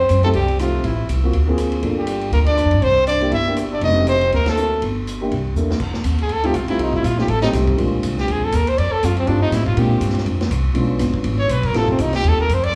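Small-group swing and bop jazz with a warm, relaxed mood, heard in a short cut from a longer piece with moderate hall reverb. A clear, vibrato-laden trumpet carries the melody up front over thumpy pizzicato upright bass, a woody upright piano with long sustain, and a gritty, saturated vintage drum kit with dark cymbals and a rolled-off top, while a breathy trombone with scooped notes adds a second line in the background until 4.8 seconds. After a band accent at 4.4 seconds and a drum fill at 5.6 seconds, the trumpet takes a solo from 5.8 seconds to the end.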